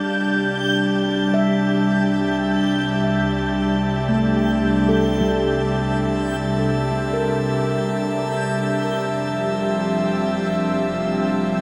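Ambient music in a melancholic, spacious mood, moving at a slow 53 BPM in 4/4. An airy, breathy pad sits up front with sustained chords, its detuned sawtooth and triangle tones thickened by chorus and a noise layer, while a handpan plays meditative arpeggios in the background with soft fingertips, its ringing stainless-steel tone carried by delay until 9.3 seconds. Beneath them, a vintage analog drone warbles and evolves through pulse-width modulation with chorus, while high above, a reversed, granular texture hovers in its own built-in reverb. A bowed double bass section, rich and focused with a smooth top and vibrato, fades in from 0.1 seconds in the background. The harmony rests on a C13 chord before shifting to Fmaj7 at 9.1 seconds, all bathed in a wet shimmer reverb with a long 8.2-second tail.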